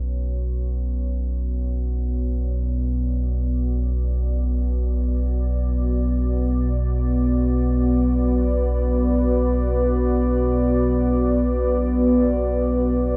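Unfolding in free time, this dark ambient drone excerpt from a longer piece rests on a single B minor chord and carries a desolate, unsettling mood. A deep, rumbling drone sits up front in the low register, its triangle and sawtooth tones holding with an ominous weight. Above it, a moody pad of detuned sawtooth unison layered with a sine sub octave sustains chords through the middle range, softened by chorus and gradually fading in across the full 13.2 seconds. Both parts swell in on slow attacks and trail off with long releases, bathed in their own reverb. The whole recording sits in a cavernous cathedral-like space with a five-second decay, and a cassette tape grain lends it a worn, murky character.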